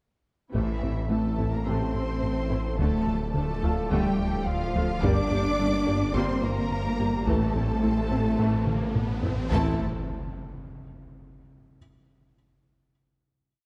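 Vast and futuristic, this hybrid orchestral and electronic film cue sets a clear, focused violin section on the melody, doubled at the octave by a background studio violin section and by cellos, while a very quiet mellow horn section also doubles the tune and violas drive a rich ostinato against a silky analog string pad from 1.0 s. Underneath, a thick, beating detuned saw bass drones beside a rubbery, hollow square-wave riff and a very quiet bowed double bass ostinato, with a soft round pluck pulsing, a felt-muted upright piano adding sparse, intimate notes with audible action noise, and a taiko ensemble striking single big hard-stick strokes in the background. An electronic riser from 7.1 s and a drum fill lead to a low impact at 9.5 s, where the theme gives way to a final chord that rings out in the scoring stage reverb.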